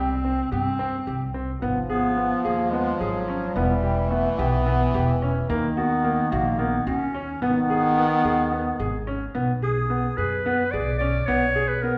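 A wet recital-hall reverb surrounds this pensive, urgent fragment of contemporary chamber music, cut from a longer piece and moving in a straight 7/8 at 218 BPM in eighths. A breathy, mellow clarinet carries the melody with vibrato, scooped notes and a jazz-style phrasing, over clear grand piano arpeggios and a woody, growly pizzicato upright bass, all up front. A clear French horn with light vibrato and a soft attack adds a second line from 1.6 to 9.0 seconds, while the harmony moves through G#m, Em and D#m before a new section arrives at 9.3 seconds.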